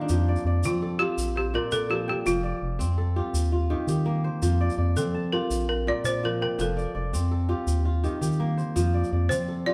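A rolling 12/8 pulse at 111 BPM in dotted quarters drives this hypnotic, flowing piece of West African string and xylophone music, cut from a longer performance in F mixolydian. A fingerpicked kora opens at 0.0 s with ringing, crisp arpeggios, and a round analog bass joins at 0.1 s, its deep, dark, sustained tone sitting up front with a fast attack and a wave-folded edge. At 0.7 s a woody, dry balafon enters with the melody, struck with hard rubber mallets and close-miked for a full, present sound. A grainy, bright tube shaker adds a vintage, band-limited shimmer low in the mix. The harmony circles steadily through F, Bb, F and Eb, and the band plays live in one room, wrapped in a wet, large studio reverb.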